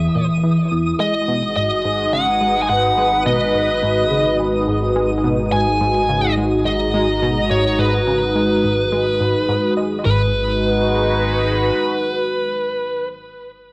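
Expansive and mysterious, this short cut from a longer piece of ambient, sequencer-driven space music moves in a straight 4/4 over an Emaj7 chord that gives way to G#m7 at 1.0 seconds. A sweeping, resonant pad holds sustained chords up front, its detuned sawtooth body and sub octave evolving under a slow filter swell, with chorus and plate reverb adding a bright sheen. Beneath it, a tight, driving sequenced synth riff with a plucky filter and fast attack churns through chorus, phaser and delay, while a fat analog bass with a moving notch anchors the low end until 11.7 seconds. High above, a twinkling granular texture sparkles on a single note with an octave-up shimmer and a long release, bathed in its own reverb plus plate. From 1.0 seconds a smooth, overdriven electric lead guitar carries the melody, picked and up front with plate reverb and delay, and it rings on with the pad to the close at 13.1 seconds, all set in a wet studio space on a home cassette recording with a faint mains hum.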